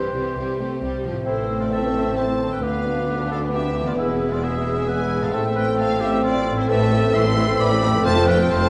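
Urgent and stormy, this fast, rubato classical fragment in A minor at 133 BPM in 3/4 sets a lush, vibrato-rich violin section's melody over an oboe, a very quiet second violin line, a background viola section, and a ringing, very quiet harp's arpeggios, with focused double basses and a smooth cello section joining at 0.1 seconds and an airy flute, a mellow clarinet, a bassoon and a vintage-toned French horn section adding lines and sustained chords from 1.3 seconds, all bathed in a wet recital hall reverb.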